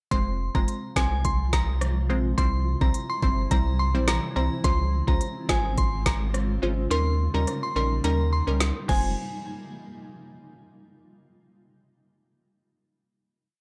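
A syncopated dancehall kick answered by the snare drives this hypnotic, sultry F minor piece at 106 BPM, with the overdriven afro-pop drum kit (knocking kick, woody snare, crisp hats, rim click and crash) sitting up front in a large room, and the kick drops out from 6.9 seconds. A round, deep sub bass slides beneath, while the glassy wavetable pluck adds bright, detuned, syncopated chords through chorus and phaser, and the glassy synth bell carries a warbling, vintage FM hook with chorus, tremolo and digital delay. A cloudy granular pad enters at 0.8 seconds with slow-attack chords that pump to the sidechain in its own reverb, and the dark production closes on a final hit at 9.2 seconds.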